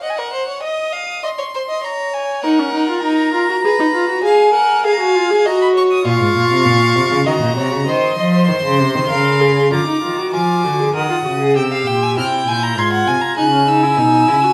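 Two bowed violins open this baroque-style string quartet fugue together, the upper one carrying a smooth, even melody with vibrato while the close second violin weaves its own line beneath, all at a driving yet contemplative 99 BPM in 3/4. The viola slips in at 2.4 seconds with soft attacks, expressive portamento and a rich, up-front tone, and the cello arrives at 6.1 seconds to anchor the bass with a focused, vibrato-laden sound. A moderate large-studio reverb frames the quartet as the minor-leaning harmony shifts into a new section at 9.7 seconds, before this fragment of a longer piece breaks off.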